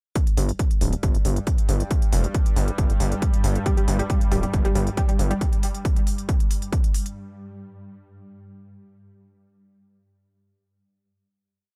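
Dark and industrial, this short piece of driving peak-time techno rides an up-front, tape-warm four-on-the-floor kick and smooth layered hi-hats while a gritty, saturated sawtooth bass pumps off the beat, a swarming, detuned, wave-folded drone hums in the background with built-in reverb, and a round analog pluck enters at 3.7 seconds with chorus and tape echo, its 3-step sequence drifting against the bar in an echo-heavy digital ambience.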